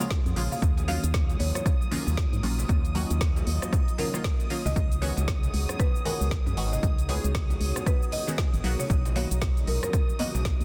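This late-night, moody deep house excerpt in Eb minor opens at once with a buzzing, woody marimba melody trailed by dub echo, a warbling, nostalgic tape-like pad with chorus and sidechain pumping, muted detuned chord stabs with phaser and lush chorus, shimmering vintage string-machine violins, and a layered drum kit of smooth hats, rim click, shaker and a soft-clipped snare. A punchy, up-front electronic kick and distant, ringing congas arrive at 0.1 seconds, and a hollow, dark organ-like FM bass with tube saturation joins at 0.3 seconds. At 116 BPM with a 16th-note swing, the chords move from Bbm7 through Ebm9 and Db9sus4 to Bmaj7 under a dense, heavily limited modern master.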